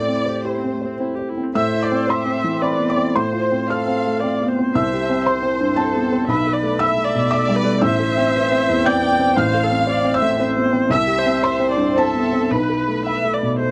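Longing and melancholic, this short neoclassical excerpt for piano and strings moves in a lilting triple metre with uneven, rubato beats that give it a hesitant, breathing quality. A felt-muted upright piano sits up front as the accompaniment, soft and intimate, spanning from deep bass to high treble, with the audible clatter of its action adding to the closeness. Further back, a muted chamber violin section carries the melody with a veiled, con sordino tone and vibrato, sounding distant and slightly dark. A single muted viola, also bowed con sordino with vibrato, fills in the middle of the texture with its own shadowy colour. All three parts play throughout, and the harmony circles through minor chords, added-ninth colours and an unresolved suspended chord that keeps the phrase yearning. The sound is dry and close, like a small-room 1970s studio, and the passage is cut from a longer piece.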